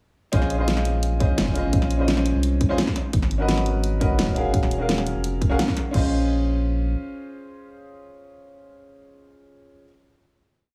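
A dreamy mix soaked in moderate plate reverb and small room ambience frames this rolling liquid drum and bass piece in Bb minor at 171 BPM, moving through Bbm11, Abm11 and Ebm11 chords in the drop. A smooth, vintage grand piano plays syncopated, rootless chord stabs through lush chorus and analog delay, over a deep, thick saturated sub bass of long gliding notes, a punchy, layered two-step electronic kick and a produced pop kit with a fat snare, closed hi-hat and crash. The drums stop at 6.0 seconds as the music settles on a final Bbm11 chord, the sub bass holds briefly, and the piano carries on until 9.9 seconds.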